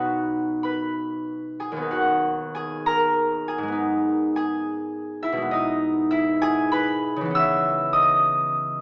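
Flowing in a rubato 6/8 at roughly 62-71 BPM in dotted quarters, this brief classical passage for solo concert harp, taken from a longer piece, moves gently and mysteriously through B major, drifting from B and B/D# into G#m and arriving on C#m7 near 7.4 seconds. The fingerpicked harp sits up front with a warm, ringing tone that spans from D#2 to E6. It is bathed in a wet recital hall reverb, though the overall sound has the character of a small speaker.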